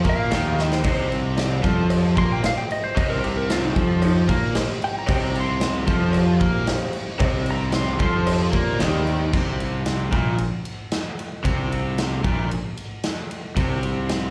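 A driving, swaggering classic rock groove in C minor at 113 BPM opens with a dark, clean lap steel playing a slide solo with volume swells, over a growly, fuzzed fingered bass, an up-front rock kit with a punchy kick and bright cymbals, and two riffing guitars: one raw and overdriven with slapback echo, the other distorted and very quiet. Behind them, a round tonewheel organ holds sustained chords through a rotary speaker, a boxy grand piano accompanies in the background, and a distant cowbell sits far back, with the sound carrying the club reverb of a live gig heard through the venue's PA. By 9.3 seconds the organ, piano, lap steel and cowbell have dropped out, leaving the guitars, bass and drums to carry on until the cut at 14.3 seconds.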